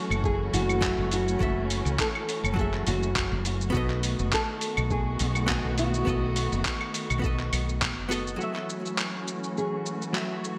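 A small, thumb-plucked nylon-string guitar opens this relaxed sunset chillout excerpt at 103 BPM, carrying the melody through a lush chorus and delay. It shares the opening moment with a clean, picked archtop guitar that supplies dark, compressed hollow-body accompaniment, and a distant chamber string section that holds bowed, expressive chords with vibrato. Almost at once a round, punchy fretless electric bass and a gritty, tape-toned sampler-style kit of claves, handclaps, hi-hat and shaker join, with a thumpy electronic kick beneath them, all set in a lightly swung 16th-note groove in F# dorian. The harmony moves from F#m7 to B7 and back, and at 8.4 seconds, as the bass drops out, the strings pass through a filter sweep into a short closing section. The production is bright, with a 1980s-style digital sheen and a lush hall reverb that leaves the whole piece feeling warm and unhurried.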